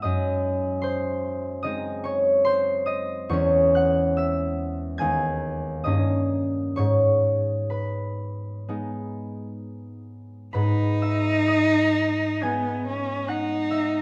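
A concert harp opens alone with ringing, fingerpicked chords in G# minor in this elegiac, yearning romantic classical duo, moving with rubato at 59-76 BPM through a reverberant recital hall until a rich, focused cello enters at 10.6 seconds with a bowed, vibrato-laden melody.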